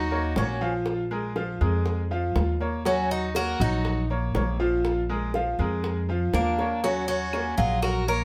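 Sultry and danceable, this short cut from a longer Cuban son and guajira piece in straight 4/4 sets a metallic, picked tres melody up front over bright concert grand piano arpeggios, a woody, thumpy pizzicato upright bass and tight, high-tuned bongos, with a brilliant, punchy trumpet adding a second line with vibrato and scooped notes, a drum fill at 6.6 seconds, and dry, woody claves entering in the background at 7.3 seconds, all heard from further back in a moderately reverberant studio.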